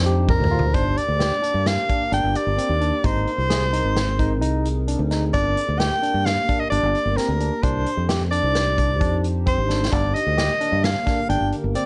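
A dark analog pad with chorus and phaser sits behind a growly, up-front fingered electric bass and a short drum fill from a distant, roomy acoustic kit played with bundle sticks, while a barky tine electric piano takes up arpeggios almost from the start and a close-miked soprano saxophone carries a bright, vibrato-laden jazz melody through this tense, intricate progressive instrumental cut from a longer piece in 5/4, all heard through the warbling pitch drift and dulled top end of worn old cassette tape with light reverb.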